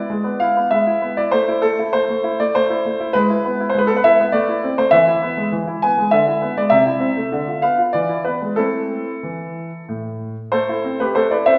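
Dramatic and elegant, this brief cut from a classical-period piano sonatina in A minor unfolds in a rubato 3/4 at 99 BPM, its clear concert grand sitting up front with a deep bass and open tone, ranging from A2 to G#5 and tuned to A4 = 444 Hz, moving through chords from E/G# and Am to a cadence on E7 and Am at 8.6 seconds, all held in the wet 1.6-second reverb of a recital hall.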